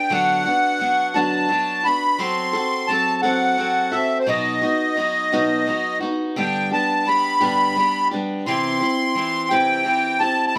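A slow 6/8 pulse carries this melancholic, haunting folk fragment, cut from a longer piece, with both parts playing throughout its roughly 10.6 seconds. Up front, a reedy, airy accordion with light tremolo tuning sings the melody, while a picked steel-string acoustic guitar with a full auditorium body supplies the accompaniment beneath it as the harmony moves from Bm/D through F#dim and B to G and C. Close, detailed microphones and a light reverb keep the sound intimate and clear.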